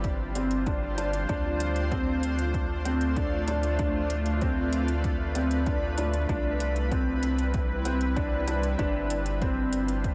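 Cinematic and intimate, this short cut from a longer piano and strings electronica piece moves in a straight 4/4 and drifts through chords from G7sus4 to Dm7, Cmaj7 and back. A granular cloud pad holds sustained chords throughout, its blurred, evolving texture carrying its own reverb and a sidechain pumping that it shares with the deep, round sub bass underneath. An overdriven, punchy electronic kick drives the groove while crisp electronic hi-hats, re-recorded in a large room, sit quietly in the background. From 0.4 seconds a grand piano plays a narrow riff in the middle register, its natural tone revealing audible action noise and colored by analog chorus and tape echo. The whole mix is dreamy and soaked in a huge ambient reverb with a long 8.8-second tail.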